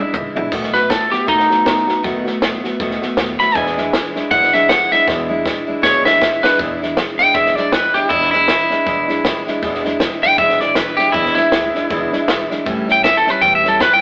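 Rowdy, retro rockabilly with a swung feel, cut from a longer piece, where a bright, twangy electric guitar at the edge of break-up sits up front and takes a clean solo until 6.6 seconds over a full-bodied dreadnought acoustic guitar, a deep sub bass with octave in the background and a compact cocktail drum kit with a punchy kick, high-tuned snare and dark cymbals that plays fills at the start and from 5.1 seconds, all captured live in one stone room with an AM radio sound.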